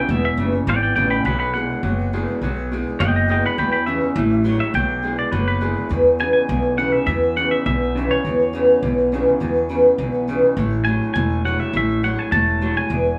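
A clean, compressed twangy electric guitar leads this rowdy, retro rockabilly cut from a longer piece, soloing through the first 5.9 seconds before the second section begins, all at a brisk 206 BPM in E major. Beneath it, a slightly broken-up, lo-fi electric guitar through a small old amp drives a low riff, while a bright, full-bodied steel-string acoustic guitar picks the accompaniment with audible finger squeak. A woody, thumpy pizzicato upright bass sits up front. The band sounds like it's playing live in one room with light studio reverb, as the harmony moves through E6, A6 and B6 chords.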